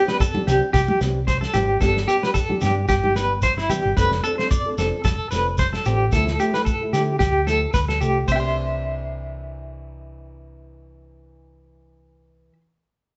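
A small, thumb-plucked nylon-string guitar with audible finger squeak opens this joyful highlife excerpt alongside an up-front, twangy electric guitar at the edge of break-up, its tremolo-laced arpeggios ringing high above the chords. A tight soul drum kit with a medium-tuned snare, pumping room sound and rolled-off top joins almost at once, along with a grainy shekere, a round, dark hollow-body bass and background congas with thick skins and hard hands, which drop out at 3.8 s. The drums and shekere stop near 8.4 s, leaving the guitars and bass to carry the swung groove into a new section, all heard as a band playing together in one room with moderate reverb and a muted top end.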